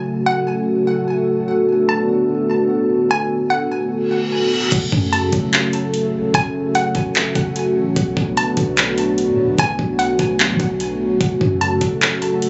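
A dark, detuned analog pad sits up front in this melancholic, ethereal cloud-rap excerpt, holding sustained chords with a slow attack and long release, its chorus-treated sawtooth body breathing with sidechain pumping. Above it, a hollow, nasal square-wave pluck carries the melody with a bouncy, bright character, wrapped in chorus and digital delay. A reverse cymbal enters at 4.1 seconds, and at 4.7 seconds the drums and a soft 808-style bass arrive in a half-time feel. The electronic kit stands up front with a knocking kick, metallic hi-hats, handclaps and crash, roughened by vintage 12-bit sampler grit, while the round, sine-like bass stays deep in the background. The harmony moves between F#m and Bm7, and the recording sounds captured on a phone in the room, with light reverb, club ambience and a rolled-off top end.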